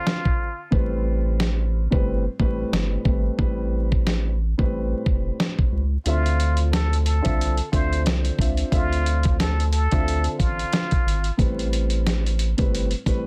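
Dry, dense and dusted with vinyl crackle, this reflective, moody boom-bap hip-hop excerpt sets a boxy, mellow baby grand piano and a round, deep analog bass alongside a gritty, thumpy sampler-style drum kit with a swung feel, while a breathy plunger-muted trumpet with wah-wah inflections, light vibrato and scooped notes offers a brief jazz phrase at the start and returns as a solo from 6.1 to 11.3 seconds.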